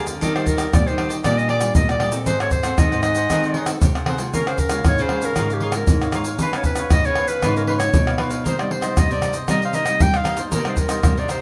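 A straight 4/4 samba and choro groove comes from tight surdo, pandeiro, tamborim and egg shaker, played with hard hands in a small-room sound and sitting up front, while a fingerpicked nylon-string guitar carries the bass with a full-bodied tone and audible finger squeak. A second classical nylon-string guitar, also fingerpicked and tucked in the background, joins a bright, crisply picked cavaquinho in the accompaniment over chords moving from Ebmaj9 through Ab7b9 and Db6 to Cm7. Above them a clear, classically styled solo clarinet sings the yearning, bittersweet melody, with the band heard live in one room under a wet studio reverb in this short cut from a longer piece.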